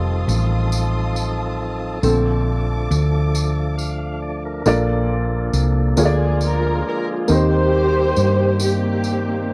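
A steady, straight 6/8 pulse sets the pace for this slow gospel passage, jubilant yet reverent, cut from a longer piece. A round, punchy hollow-body electric bass sits up front, with an intimate baby grand piano beside it, its action noise audible and its notes short in sustain. A percussive tonewheel organ holds full, clean chords with key click through a fast-spinning rotary speaker, and a jingly, vintage-sounding tambourine keeps time underneath. A warm string section with vibrato and expressive portamento holds high chords until 4.6 seconds. At 6.0 seconds a darker, woody string section takes the melody, lush and up front with a slapback echo. The whole has the dry, close feel of a 1970s small-room studio recording, as the harmony moves through rich seventh and sixth chords.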